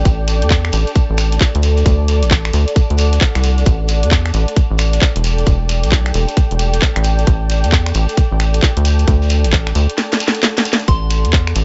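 A rubbery, nasal square-wave bass with tube saturation sits up front in this soulful, late-night two-step UK garage excerpt at 133 BPM, swung at 63% on the 16ths, bouncing beneath a tight electronic kick and a layered garage kit of cracking snare, finger snaps, handclaps and hi-hat re-recorded in a small room. A blurred, detuned granular cloud pad pumps to the sidechain through its own reverb over chords moving from A7sus4 through D7 and Em7. A grainy, distant shekere adds texture, a drum fill runs from 10.0 to 10.9 seconds, and at 10.9 seconds a soft, pure FM bell touched with chorus, phaser, 12-bit grit and digital delay sounds a brief C6 over the closing Asus4.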